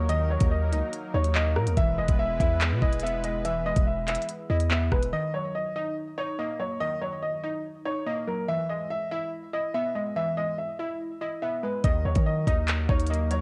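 Ominous and cold, this half-time drill hip hop excerpt at 143 BPM in Eb phrygian sets a woody upright piano melody with cassette tape and tape echo over a glassy, detuned wavetable pluck and a smooth sawtooth analog pad with chorus and tremolo, while a deep sine 808 bass and an up-front electronic drill kit of knocking kick, crisp hi-hats, handclaps and rim clicks drop out with the pad at 5.1 seconds, leaving piano and pluck alone over Ebm and E chords until bass, drums and pad return at 11.8 seconds, all within light reverb and the grain of a home cassette recording.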